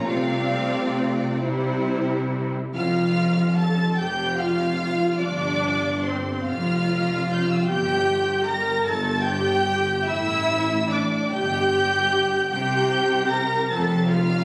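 Swaying in a rubato 6/8 at roughly 43-52 BPM counted in dotted quarters, this brief excerpt from a slow romantic movement for string orchestra in F major unfolds with a warm, tender mood. The first violins carry the melody high above the ensemble, their lush, vibrato-laden tone smooth and somewhat distant, while the second violins trace a focused second line beneath them. Violas, sitting up front in the balance, fill out the accompaniment with an even, rich sound, and the cellos and double basses anchor the bass with rich, bowed depth. The harmony drifts through suspended and open chords, moving from Csus4 to C before the second section begins at 2.8 seconds on Fadd9, passing through brief unharmonized moments and settling on F at 13.7 seconds. A scoring-stage reverb with a 1.9-second tail surrounds the strings, though the phone capture in a club-like room lends the whole a roomy character.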